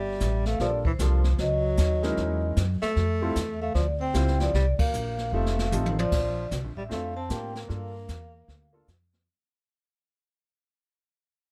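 A relaxed, sophisticated swing groove at 152 BPM opens this short cut from a longer small-group jazz piece, with the brushed kit entering at 0.2 seconds in a small, natural-sounding room, its dark cymbals, medium-tuned snare and boomy kick giving the time a soft, rounded pulse. Underneath, the pizzicato upright bass sits up front with a woody, dark tone from its steel strings. The soft-mallet vibraphone carries the melody, its ringing metallic notes colored by plate reverb and a slow motor vibrato, while a breathy tenor saxophone plays a mellow subtone second line below it with a soft attack and gentle vibrato. A warm baby grand piano joins at 0.6 seconds, offering short-sustain accompaniment as the harmony moves through chords like Gm7, Gb13 and Fmaj7. A band accent and a drum fill lead into a closing passage that opens on Bbmaj9 and fades out, the close, detailed miking and light reverb keeping the small group intimate throughout.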